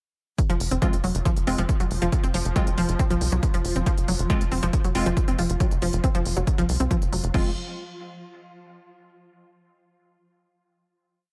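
A punchy four-on-the-floor electronic kick and a tape-warm techno kit of smooth closed and open hats and crash open this hypnotic, dark peak-time techno piece at 138 BPM in F phrygian, joined at once by a tight, nasal sequencer bass rolling in sixteenths and a lush, warbling detuned unison pluck whose 7-step loop drifts against the bar through dub echo, then by crisp, phased wavetable chord stabs echoing sparsely in one parallel shape, while a swarming, granular sine drone hovers in the background from 1.4 s, all of the melodic parts pumping to the kick until the groove gives way at 7.3 s.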